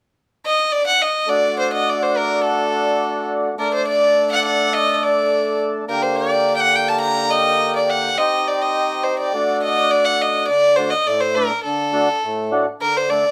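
A straight 2/4 pulse at 104 BPM carries this soulful, bittersweet klezmer piece in D phrygian dominant, tuned to A4 = 437 Hz and cut from a longer piece. A single violin with a nasal, gut-string tone and an airy bow takes the melody from 0.5 seconds, played close and up front in a period style. A mellow, full, reedy accordion joins at 1.3 seconds to accompany through D, Gm, Cm and back to D, both sitting in a moderate studio reverb.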